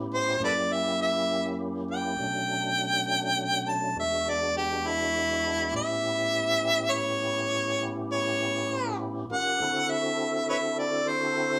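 A slow 12/8 pulse at 67 beats per minute gives this rollicking, soulful blues in A mixolydian a straight, unhurried sway. A tonewheel organ holds sustained chords throughout, its fat, lightly overdriven tone colored by chorus vibrato, audible key click and a slow rotary speaker. Entering at 0.1 seconds, a warm harmonica carries the melody up front in a jazz-styled solo over the first 5.7 seconds, using a soft attack, vibrato, scooped notes and tongue slaps. The harmony moves from F#7b9 through Bm7 and E7, then settles on A7 and D7 in the second half. Moderate studio reverb and the feel of a band playing live in one room give the passage an intimate, present sound, cut from a longer piece.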